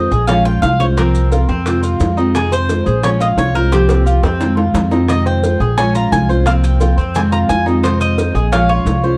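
Sultry and warm, this short slice of Cuban son and guajira sets a bright, metallic tres melody over a second tres picking arpeggios and a full-bodied steel-string acoustic guitar accompaniment, with audible finger squeak on the guitar. A woody, thumpy pizzicato upright bass with gut strings sits up front, while tight, high-tuned bongos and grainy maracas stay in the background, and a drum fill arrives at 3.7 seconds. The harmony circles through Bbm7, C7sus4 and Fm7 in a dark production with light reverb.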